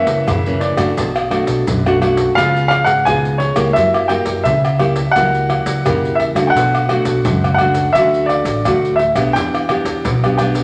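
A baby grand piano with a long, natural sustain carries the melody through this festive, lively samba-choro fragment in B minor, set at 86 BPM in a straight 4/4 and cut from a longer piece. Up front, a fingerpicked classical nylon-string guitar with fresh strings and audible finger squeak supplies the accompaniment, while a woody, growly pizzicato upright bass thumps underneath. Soft-handed maracas, tight surdo, pandeiro and tamborim add a vintage, band-limited percussion layer, all bathed in a wet large-studio reverb.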